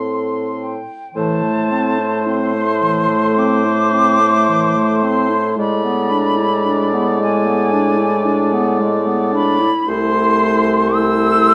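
This excerpt opens with an airy concert flute singing the melody high above, carried with vibrato and a distant, expressive tone, while a roomy oboe traces a second line beneath it. A mellow clarinet and a smooth-topped French horn fill out the accompaniment over an up-front bassoon bass with a soft attack and a vintage color, all five playing throughout this slow, rubato romantic movement for wind quintet in A minor at 55 BPM. The mood is yearning and solemn, with the harmony moving from Am to E7/A at 5.6 s and settling on Am/C at 9.9 s within a moderate recital hall reverb.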